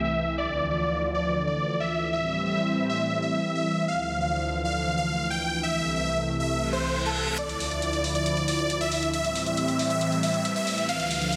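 Huge, bright detuned supersaw chords carry the melody up front through a filter sweep, phaser and tape echo, over a thick, airy unison pad with chorus and vintage 12-bit sampler grit, in this driving, emotional uplifting trance excerpt set in light reverb, where a background reverse cymbal at 6.7 s leads into a build-up with a riser and tape-warm, high-passed electronic hi-hats from 7.4 s.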